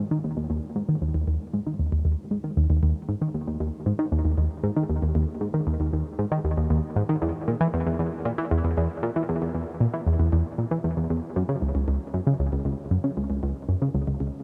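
A tight, driving sequenced synth plays alone from start to finish, its sawtooth tone shaped into a filtered pluck with a fast attack and sustained, mellow body, sitting up front with chorus and tape echo. This hypnotic, cosmic ambient piece moves in a straight 4/4 pulse within a huge, lingering reverb and a cassette-tape sound. The recording is a short portion cut from a longer piece, lasting about 14.4 seconds.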